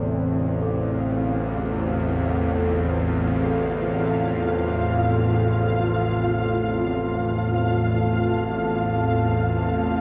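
Dark and unsettling, this free-time dark ambient drone excerpt sits on an F/A chord, with a deep, moody pad carrying sustained chords under chorus, a tense, nasal, string-like bowed drone up front in the low register, a flickering, grainy texture entering at 0.7 seconds, and a very quiet, metallic bronze singing bowl ringing out in meditative arpeggios until 7.3 seconds, all bathed in a huge, wet reverb and captured on cassette tape.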